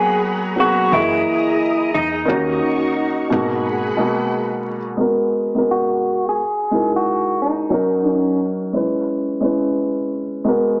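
A hazy, melancholic hip hop excerpt at 88 BPM in G# minor opens with a slightly broken-up electric guitar melody with spring reverb, a felt-muted upright piano with audible action noise, and silky string-machine chords with ensemble chorus, the guitar and piano sitting up front. A woody, thumpy pizzicato upright bass plays from 0.9 to 3.9 s under chords moving through G#m9, F#13 and D#m7, and the strings drop out at 5.0 s as a filter sweep begins. The whole recording is coloured by warbling worn tape, vinyl crackle, pitch drift and a small-speaker sound, and the piano carries on alone after the guitar stops at 8.4 s, ending on E6.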